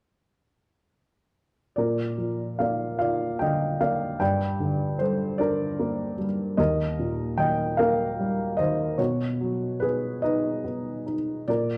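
At 1.8 seconds a mellow, woody upright piano begins alone, up front and intimate, its worn, slightly detuned tone carrying audible action noise as it plays a peaceful, lyrical classical passage in Bb major. The slow 6/8 pulse moves freely with rubato at about 50 dotted-quarter beats per minute, drifting through Bb, Gmadd9, Eb and Badd9 from the low bass up to the upper middle register. A moderate recital hall reverb and a dark, warm production surround this brief fragment of a longer piece, which ends at 11.8 seconds.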